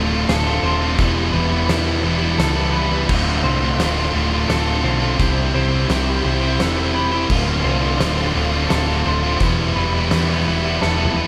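A straight 3/4 pulse at 86 BPM carries this brooding, cathartic post-rock passage in D dorian, cut from a longer piece. Two picked, overdriven guitars drive the riff from the start: a sludgy, bright one sits up front while a crunchier partner thickens it, and a round, hollow-body fingered bass anchors the low end just as prominently. An oversized, low-tuned drum kit enters at 0.3 s in the background, its fat snare, punchy kick and dark cymbals sounding gritty and rolled-off, as if heard in a stone room; a drum fill closes the passage at 10.8 s. Also arriving at 0.3 s, a slightly broken-up guitar through a small old amp plays arpeggios in the background, wrapped in spring reverb and digital delay. Very quiet and distant, a lush bowed string section holds sustained chords with vibrato as the harmony moves through Dm7, Em7 and Cmaj7, all set in light reverb and a small room ambience.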